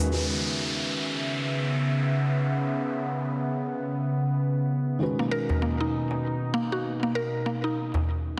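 A swung sixteenth-note feel in 4/4 underpins this mystical organic downtempo excerpt, where a smooth, warbling vintage analog pad with chorus sits up front, a dark, felt-muted upright piano with tape echo murmurs in the background, and an electronic downlifter falls away until 5.0 s as the harmony moves from C#m7 to Bmaj7. At 5.2 s a woody, round, mallet-like synth pluck enters with chorused, tape-echoed arpeggios, joined at 5.5 s by a crisp, deep, saturated metal-shell darbuka. A wet concert-hall reverb and a dense, heavily limited modern master give the warm piece a lush, polished sheen.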